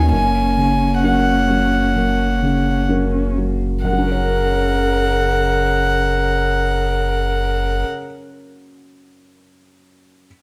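In a rubato 4/4 that slows through the first 3.8 seconds, this excerpt from a neoclassical piece for piano and strings feels tender and hopeful. A single sul tasto violin carries a floating, up-front melody over a distant, pure cello line and a dark, woody viola with vibrato, while a felt-muted upright piano adds mellow, intimate accompaniment and a clean sine sub bass sustains deep, smooth low notes. Light reverb surrounds the ensemble, and after the strings and bass stop near 7.9 seconds the soft piano continues alone until 10.3 seconds.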